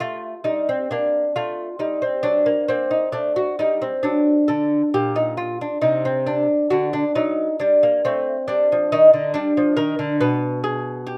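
Recorded outdoors with light reverb and free of room sound, this short cut from a longer piece places a single lute up front, its notes trailed by a slapback echo. It is a grave, flowing baroque-style dance in 3/4 and G minor, taken at about 68 BPM with a free, rubato feel, and tuned to A4 = 443 Hz. The fingerpicked lute sounds bright and delicate, its nylon double strings, some doubled at the octave, ranging from Bb2 up to B4. The harmony moves from Gm through F9 and D/F#, settles on Bb69 at 4.9 seconds, then passes through D and G5 before the chords give way at 10.2 seconds. The lute plays alone for the full 11.2 seconds.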